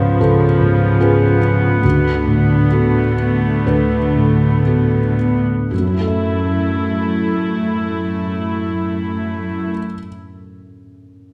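A rubato 4/4 pulse that slows through the first 5.7 seconds carries this sorrowful, bittersweet cinematic film-score fragment, where a dark, thick-felt upright piano sits up front as accompaniment, a pure, floating viola section bowed sul tasto hovers beside it, and a cello section with light vibrato holds the bass in the background, the strings stopping at 9.7 seconds while the piano lingers to 11.3 seconds in the moderate bloom of a scoring-stage reverb.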